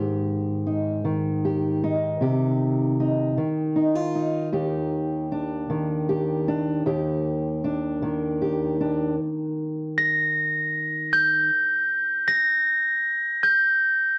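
Uplifting and gently warm, this short folk excerpt in a straight-feeling 6/8 is cut from a longer piece and builds steadily throughout. A fingerpicked steel-string acoustic guitar carries the accompaniment from the start, its tone dark and up front, moving through Ab5, Cm and Ebmaj7 chords before stopping at 11.5 seconds. At 10.0 seconds a glockenspiel played with rubber mallets enters with a high melody, its bell-like ringing mellow and soft. A moderate large-studio reverb opens up the space, while a worn cassette-tape quality adds a warbling pitch drift that gives the recording an aged, nostalgic character.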